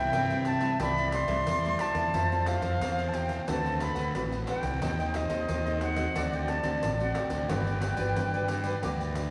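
A straight 4/4 pulse at 90 BPM drives this lively, festive samba and choro excerpt in G major. A jingly, band-limited pandeiro plays alongside an overdriven, fuzzy fingered electric bass that sits up front, while an airy, distant silver concert flute carries the tongued melody with vibrato over a clear, present clarinet second line. A crisp picked cavaquinho and a fingerpicked nylon-string guitar with fresh strings stay in the background, inside a reverberant concert-hall space.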